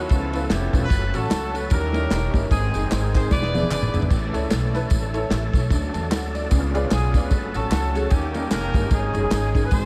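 Uptempo gospel in C# minor at 150 BPM with a swung feel, this soulful, solemn excerpt sets a distant, roomy horn section on the melody, which drops out after 4.1 seconds and returns at 6.9 seconds. Underneath, a woody, thumpy pizzicato upright bass sits up front with a dark, smooth soul drum kit, which plays a fill from 3.3 seconds. Further back, an intimate, slightly detuned upright piano with analog chorus, a gritty overdriven tonewheel organ turning through a slow rotary speaker, and faint tambourine, shaker and group handclaps all sit in a dreamy mix soaked in huge ambient reverb.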